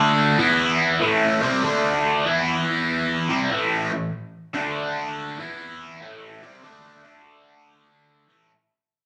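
Smoky and gritty, this short rock excerpt cut from a longer piece moves at 96 BPM in 4/4 with a swung eighth-note feel, centred on A minor. A single cranked stack guitar carries the whole passage as a solo from 0.0 to 8.5 seconds, its bright, picked electric tone pushed into overdrive and coloured by a phaser. Double-tracked and placed up front, it ranges from A2 to E4 while cycling through E5, Am and D5 shapes before landing on A5 at 8.2 seconds. The take has the feel of a band playing live in one room, with a moderate large-studio reverb lending a natural sense of space. The entire clip sits within a fade-out, so the guitar recedes across its brief span.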